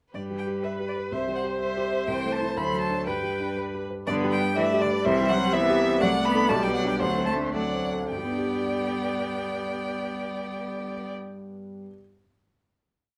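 A clear, focused single violin carries the melody up front in this cheerful, graceful classical-period movement for piano quintet in G major, a quick 2/4 with a rubato feel at 104-126 BPM, over a dark, mellow, vintage-toned grand piano spreading broken chords with long sustain. A smooth second violin and a distant cello move in chords in the rhythm of the tune, the cello doubling it at the octave, while a rich viola adds a counter-melody and independent inner lines, the strings all bowed with vibrato in a light reverb. The whole piece presents its opening section twice, slows from 5.5 to 8.1 seconds and settles on a final G chord, with the strings stopping at 11.1 seconds as the piano rings on to 12.0.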